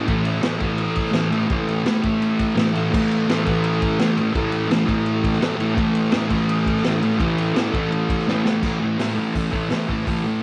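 A thick, dark fuzz guitar sits up front, double-tracked and picked, driving a distorted riff through this rowdy, raw garage rock clip cut from a longer piece. Behind it, an acoustic vintage drum kit works its crash, hi-hat, kick, ride and snare, with a punchy kick, a medium-tuned snare and dusky cymbals whose top end is rolled off. The drums sit mid-forward in the mix, a step below the guitar, giving the pair the hard-hitting sound of a small band. A drum fill at 8.3 seconds carries the music into a new section at 8.6 seconds, which runs to the end at 10.4 seconds. A moderate echo chamber reverb and the close ambience of a small room wrap around the parts, keeping the sound rough and immediate.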